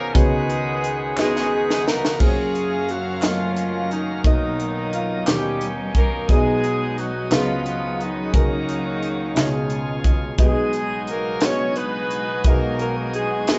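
Uplifting and jubilant, this slow gospel piece in F# major sways in 6/8 at 58 BPM, with a clear, tightly voiced horn section carrying the melody in octaves over a woody, slightly detuned upright piano with audible action noise and a bright, shouting tonewheel organ lightly overdriven through a slow rotary speaker. A crisp fusion drum kit with a punchy kick and high-tuned snare sits up front in a pumping small room, and its fill at 1.2 seconds brings in a breathy alto saxophone melody and very quiet, hollow handclaps. At 2.2 seconds a lush, bowed string section with portamento settles into the background on an F#maj7 chord, and the whole band plays live in one room with a wet reverb and a dark top end.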